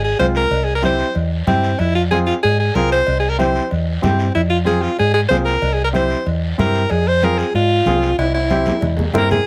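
Cumbia with a driving, fiery feel, cut from a longer piece: a bright alto saxophone with vibrato carries the solo melody up front, over a dark, round hollow-body short-scale electric bass and a woody upright piano that fills in the harmony. In the background, soft-handed congas, ringing metal cowbell and timbales heard from a distance, and a raspy, band-limited guiro keep the groove moving as the chords alternate between minor and dominant. A drum fill from 8.2 seconds closes the passage under light reverb.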